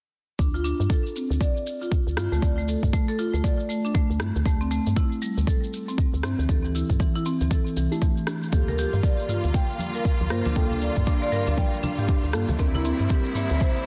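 A hypnotic, spiritual afro house groove opens with up-front rosewood marimba arpeggios under dub echo, a round, woody FM bass, a deep, tape-warm electronic kick, crisp hi-hats, rim clicks, shaker and toms from an afro-pop kit, and dark, mellow chord stabs in the background carrying chorus, phaser and a filter sweep, with the marimba, bass and stabs pumping against the kick over a swung sixteenth feel and a Dm7, A7sus4/D, Gm9/D, C9/D progression, before a rich, bowed string section with vibrato adds sustained chords at 8.5 seconds and bright, low-tuned congas join quietly at 8.7 seconds in this dense, heavily limited cut.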